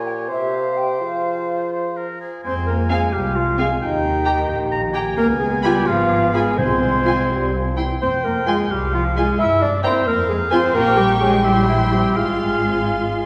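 A lilting 6/8 pulse at 86 BPM, pushed and pulled by rubato, drives this urgent, restless classical-period orchestral excerpt in F minor, where clear oboe, mellow clarinet and a crisp, pure-toned flute group weave second lines from the start over a present, up-front bassoon that drops out at 2.2 seconds, before veiled, con sordino chamber strings arrive, with cellos and double basses anchoring the bass from 2.4 seconds and distant violins carrying a faint melody as violas fill in from 2.9 seconds, while a tight French horn section holds soft background chords, round timpani tap a single C3 at 6.6 seconds, and a wet concert-hall reverb wraps the whole ensemble.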